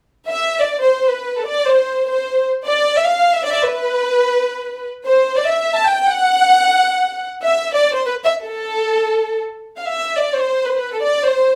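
This Mexican folk fragment is dramatic and passionate, moving in a lilting 3/4 at 152 BPM with a light swing and a rubato feel that lets the time breathe. A bowed violin section carries it alone from 0.3 to 11.6 seconds, its lush ensemble tone shaded with expressive vibrato. The strings sit close and up front, ranging from A4 to A5, and a short, wet studio reverb adds a sheen of space around them. At 9.8 seconds the opening material returns, and the piece is cut off shortly after as part of a longer work.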